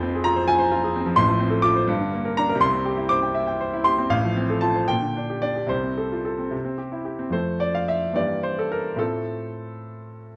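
A clear, smooth grand piano with a vintage tone and short sustain sits up front in this lyrical romantic character piece for solo piano, cut from a longer work in F major and flowing in a rubato 6/8 at roughly 72-89 BPM. It spans from deep bass to bright upper notes under light reverb and the warbly pitch drift of worn old cassette tape, and it moves into a new section at 7.3 seconds.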